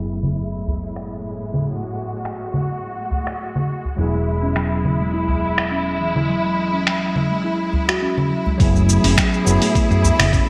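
A growly, woody fretless electric bass with tube saturation and analog chorus anchors this meditative organic downtempo piece, while a gritty, tape-warm sampler-style kit of cabasa, congas, finger snaps and hi-hat sits up front in gated reverb, joined by a deep, dry udu. A worn, slightly detuned tine electric piano with delay stays in the background, and a biting, bowed symphonic string section holds lush chords, both pumping under sidechain. A round, ringing steel tongue drum adds delayed arpeggios from 4.0 seconds, and a thumpy electronic kick arrives at 8.6 seconds as the filter sweep ends, all in a bright 1980s-style digital mix bathed in hall reverb.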